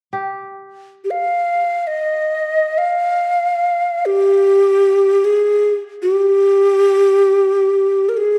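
A breathy, mellow cedar flute in the Native American style carries the melody of this meditative world piece, its hollow wooden tone sitting up front with gentle vibrato and a soft chiff on tongued notes. Its line moves within a range of G4 to F5, drifting in free time with a haunting, unhurried feel. Beneath it, a fingerpicked kora supplies a bright, crisp texture that rings out on G4, entering at 0.1 seconds before the flute joins at 1.0 seconds. The kora sits much lower in level, its acoustic sparkle framing the flute's breath. A recital hall reverb with a 1.4-second decay wraps the pair in a dark, enveloping space, and the short passage is cut from a longer piece.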